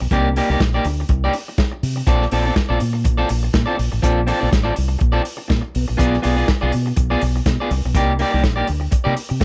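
The recording is dry and close, with little reverb around a three-piece band that sits up front. This short excerpt of joyful, danceable disco runs at 122 BPM in 4/4 in Bb major, with a light 16th-note swing. A fingered electric bass, dark and round with a punchy, direct-amped tone, anchors the low end. A picked electric guitar, warm and slightly broken-up at the edge of break-up, carries the accompaniment. From 0.1 seconds a muffled, lo-fi soul drum kit with a rolled-off top plays hi-hat, a tight kick and a medium-tuned snare. The harmony moves from Cm9 to Bbmaj9, then to a rootless Bb7b9 before returning to Cm9.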